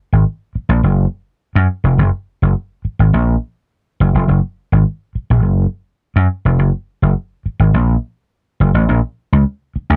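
A dry, close 1970s-style studio sound with a modest booth ambience frames this short, gritty funk clip at 104 BPM in a straight 4/4. A vintage electric slap bass plays alone from 0.1 s, amped, punchy and up front, moving between F1 and Gb2. Its phrase shifts into a new passage at 8.9 s before the clip ends at 10.0 s.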